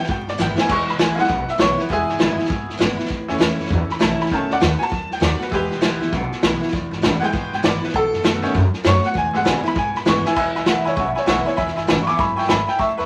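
A jangly, metallic tack piano takes a honky-tonk solo up front for the first 10.4 seconds of this rowdy, retro rockabilly excerpt in E major, moving at 198 BPM with a swung feel. A bright picked steel-string acoustic guitar with audible finger squeak, a woody pizzicato upright bass and a vintage drum kit with dark cymbals and a tight kick play underneath, with drum fills near the start and at 10.2 seconds. At 10.7 seconds an open, warm upright piano takes the melody, while moderate reverb, vinyl crackle and lossy compression artefacts give the recording a worn, old-record character.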